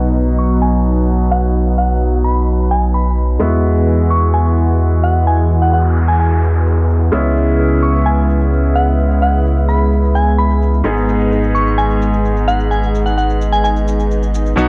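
Emotional and euphoric, this festival progressive house excerpt in G# minor at 129 BPM sets a brilliant, intimate grand piano with digital delay and audible action noise over a lush, detuned sawtooth unison pad with chorus and a deep, saturated sub bass up front, while a faint electronic shaker sits in the background, a glassy FM synth bell melody with chorus, tremolo and tape echo enters at 0.4 s, a noise sweep sounds from 5.7 s to 7.1 s, and a filter sweep runs throughout as the chords move from B through Eadd9 and C#m7 to G#m.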